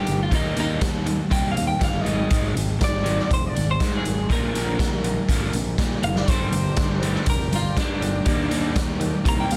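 A slightly broken-up electric guitar, played through a small old amp with tape echo, carries a solo melody from the start over a crunchy, double-tracked overdriven guitar riff in this moody, cool indie rock piece at 121 BPM in 4/4. A fuzzy, overdriven picked bass and a raw garage drum kit with a punchy kick and rolled-off top join almost at once, moving through Eb, Ab5, Bb and Gm toward Ebmaj7. At 6.3 seconds a buzzy combo organ adds sustained chords with light vibrato in the background, and the mix sits in light reverb and small room ambience within a dense, heavily limited master.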